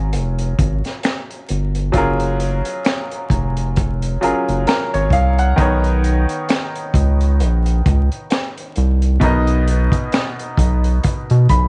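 This R&B and neo-soul passage, cut from a longer piece, moves at a slow 66 BPM in 4/4 with a swung sixteenth-note feel, its mood sensual and relaxed in F# major. A bright grand piano carries the harmony from the start, sitting up front with a brilliant, natural tone as it moves from F#maj9 to Bmaj9 at 5.6 s. Beneath it, a round analog bass, the loudest part, blends square and sine character with a filter pluck, a fast attack and sustained, deep notes. The crunchy breakbeat kit enters at 0.1 s with finger snaps, hi-hat, a punchy kick and a high-tuned snare, its acoustic sound saturated and gritty with a rolled-off top. Small room reverb and a bed of vinyl crackle frame the whole passage, and the recording's highs stop short above 10.5 kHz for a dusty, intimate finish.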